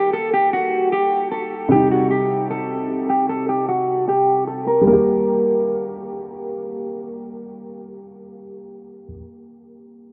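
A vast, cavernous reverb and a warm, shadowy mix wrap this brooding, menacing hip hop fragment in G harmonic minor, moving at 152 BPM with a half-time feel, while a filter sweep runs through the opening 4.9 seconds over chords of Eb, Cm and then Gm. Up front, a slightly broken-up electric guitar, fingered and colored by phaser and low-pass filtering, carries a dark melody until 6.0 seconds. A felt-muted upright piano, soft and intimate with audible action noise under its own low-pass filter, keeps accompanying until 10.1 seconds.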